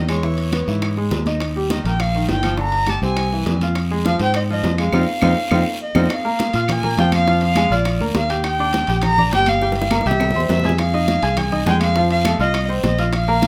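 Heard through a moderate studio reverb, this driving, passionate salsa excerpt in F minor at 205 BPM puts a dark, boxy bowed fiddle melody with light vibrato and a round, punchy fingered electric bass up front over a clear grand piano with audible action noise, while bright, high-tuned congas, low-tuned bongos, ringing metal-shell timbales, woody claves and a raspy, saturated guiro sit in the background, and a band accent and drum fill carry the music into its second section at 6.1 seconds.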